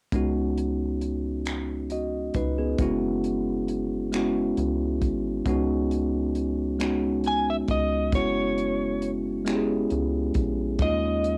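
Slow R&B in a straight six-eight at 45 BPM, this late-night, yearning excerpt from a longer piece sits in C# dorian, slightly sharp of standard pitch, with a home-cassette character and light reverb. A bell-like tine electric piano leads the accompaniment, bright, clean and up front, with a cassette-tape coloring as it moves through suspended ninth chords on C# and F#. Beneath it, a rubbery square-wave bass with a hollow, resonant filter pluck bounces low and dark, each note striking fast and decaying. A compact cocktail kit of finger snaps, hi-hat and a dry, punchy kick keeps time, also carrying that tape tone. At 7.3 seconds a lightly driven electric lead guitar enters with a picked, compressed, slightly broken-up melody placed up front, before a closing D#9sus4 chord at 10.8 seconds.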